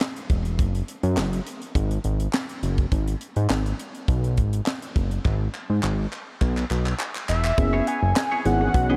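A tight, dry funk drum kit with a high-tuned snare and hollow group handclaps opens this funky, danceable early-eighties boogie funk excerpt, joined almost at once by a fat, detuned sawtooth bass with a filter sweep; during a drum fill a mellow sub-octave analog lead with vibrato and diffuse ambient delay enters, then at 7.6 seconds a lush, chorused FM electric piano over a soft pad and a clean, compressed semi-hollow guitar riff arrive, with dark, round synth brass slipping in at the very end in the background.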